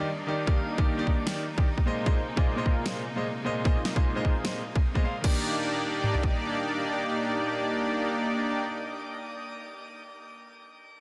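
Dense, heavily limited and bathed in shimmering reverb, this playful, euphoric future bass fragment pairs a brilliant, deep-bassed concert grand piano with delay and distant, lightly vibrato symphonic strings, both pumping, beneath an up-front, detuned supersaw riff that pumps through a low-pass filter and delay from 0.5 s, while a trap kit's hard-clipped kick and toms and, from 1.3 s, a dubstep kit's huge snare and crash drive a swung half-time feel.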